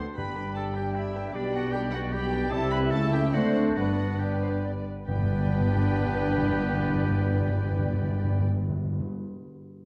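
A dark, reverberant recital-hall sound frames this dramatic, restless fragment of a quick classical-period symphonic movement in three, where con sordino violins carry a veiled melody in the background while a second violin section, a clear oboe, a close-miked clarinet and a very quiet, airy flute group weave supporting lines. Hushed violas and a warm bassoon fill the middle, cellos and double basses anchor the bass with a veiled, bowed tone, and distant, roomy French horns hold sombre chords beneath warm trumpet stabs. Up front, round, dry timpani on calf heads strike at 0.2 seconds and return from 3.8 seconds, while the music is slowing between 1.9 and 5.1 seconds.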